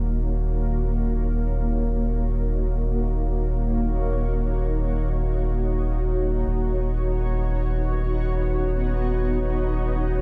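A soft dub sub bass sits up front, holding a deep, round Eb1 across the full 10.2 seconds, its triangle and square-wave tone shaped by a fast attack and a touch of tube saturation. Above it, a granular cloud pad sustains chords between Bb3 and Db5, its unison voices cloudy, blurred and evolving, with a slow attack, long release and its own built-in reverb. This short ambient dub excerpt floats in free time in Eb minor, tuned to A4 = 439 Hz, and moves from Ebm7 to Badd9/D# at 6.5 seconds. The mood is meditative and hazy. The production is dark and warm, with little added reverb around the parts.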